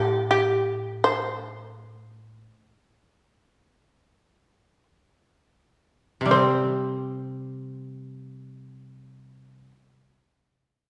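This Japanese traditional chamber piece, taken from a longer work, moves in free time with a meditative, austere mood, and its pace slows through the first 6.3 seconds before a new section begins. A bright, buzzing shamisen carries the melody up front, its fretless, plectrum-plucked notes sounding percussive in a high, narrow range, while a koto played with fingerpicks supports it with dry, woody accompaniment lower down. Both instruments play together from the start until just under 10 seconds, set in a generous hall-like reverb.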